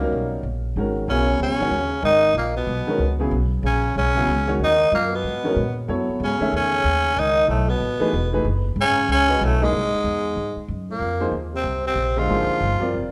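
Set in a wet, large studio reverb, this short cut from a longer jazz piece feels cool and spiritual, carried by a brisk swing in four. A growling tenor saxophone leads the melody up front, its tone bright, raspy and gritty in a soloing jazz style. A clear trombone joins at 1.1 seconds with a second line in a lower register, lending a vintage colour beneath the horn. A boxy, woody upright piano comps through the whole passage, while a pizzicato upright bass with steel strings sits close and acoustic at the bottom. The harmony moves through rich minor eleventh chords and an augmented chord before the music shifts into a new section at 11.0 seconds.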